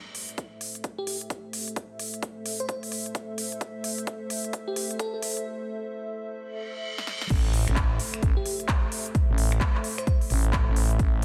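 A dense, heavily limited mix with light digital ambience carries this aggressive, bouncy bass house cut in A minor at 130 BPM, swung on the sixteenths. A moody, detuned analog pad holds sustained chords under overdriven big-room drums with a punchy snare, crisp hats, snaps and claps, while an up-front punchy kick drives the build-up and a sparkling, bell-like FM electric piano with tremolo and dub echo plays a short melody from 1.0 s. A reverse cymbal leads into the drop at 7.3 s, where an impact lands and a thick, growling FM bass enters, pumping against the kick.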